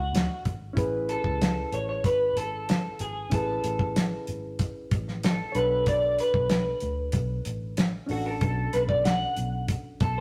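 Hazy and mellow, this short cut from a longer indie and bedroom pop piece moves at 94 BPM in B dorian, with a twangy, slightly broken-up electric guitar through a small old amp taking an up-front solo with vibrato over a reedy electric piano, a round, foam-muted fingered bass and a dry, damped 70s drum kit with a fat snare and tight kick, all set in a moderate stone room on a rough rehearsal-room recording as the chords move from Bm7 to Amaj7 and back to Bm7 at 5.6 seconds.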